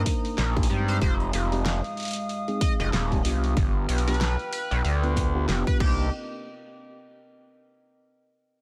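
A moody analog pad, a mellow tine electric piano pumping with sidechain and echoing through digital delay, and a saturated, wave-folded synth bass open this swaggering, gritty glitch hop drop at 94 BPM in C minor with a swung 16th feel, joined at 0.1 seconds by a punchy layered electronic kick and a pop kit with a fat snare, crash and hi-hat, before an edgy, tearing sync lead with vibrato enters at 0.9 seconds over a Cm7, Fm7 and G7 progression, all in a digital ambience.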